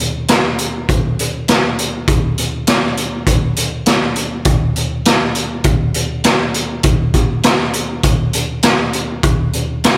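A raw garage drum kit carries this dark, cathartic rock excerpt on its own from 0.0 to 10.0 seconds, with hi-hat, kick drum and snare drum. The tempo sits at 101 BPM in a straight 4/4 feel. The kit sounds acoustic and gritty, captured in a small room, with a boomy kick, a medium-tuned snare and a saturated, mid-forward character. Its top end is rolled off, and the drums sit up front in the mix. A light reverb surrounds the recording, which is cut from a longer piece.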